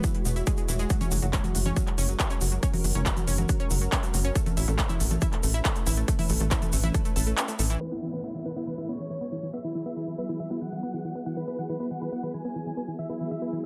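A tight, punchy sequencer bass drives this uplifting trance excerpt alongside an overdriven, punchy kick, crisp-hatted drum kit with congas and handclaps, and a grainy tube shaker, while a shimmering, ethereal pad holds sustained add9 chords and a round analog pluck with dub echo arpeggiates beside it, both pumping. The kick drops out around 7 seconds and the rest of the drums and bass stop at 7.8 seconds, when a huge, detuned supersaw melody soars in over a background downlifter.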